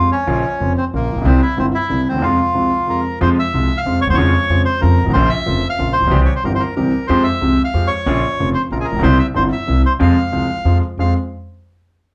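This passionate, tense tango excerpt moves at 185 BPM in a rubato 3/4, set in F harmonic minor over a Bbm–C7–Fm cycle. A reedy, vintage-toned bandoneon carries the melody up front, while a polished concert grand piano with deep bass and audible action noise plays the accompaniment and a woody pizzicato upright bass anchors the low end. The three instruments play throughout the 11.1 seconds, framed by a short, wet club reverb that places the listener somewhat back in the room.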